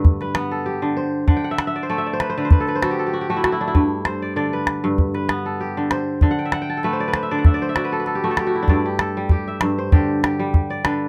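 A fingerpicked kora and a small calabash begin together, setting up a hypnotic, flowing piece of West African string and xylophone music at 97 BPM in 4/4, with a slight swing on the sixteenths. The kora plays mellow, ringing arpeggios across a range from G2 to A5, its crisp attack placed up front. The calabash sits close and louder in the balance, giving the groove a dry, present pulse. The harmony moves between G and D in G major, and the kora adds fills between 1.3 and 3.7 seconds and again from 6.3 to 8.7 seconds. At 8.7 seconds the music moves into a new section over G, and this short cut from a longer piece ends at 11.1 seconds, heard with little reverb through close, detailed microphones.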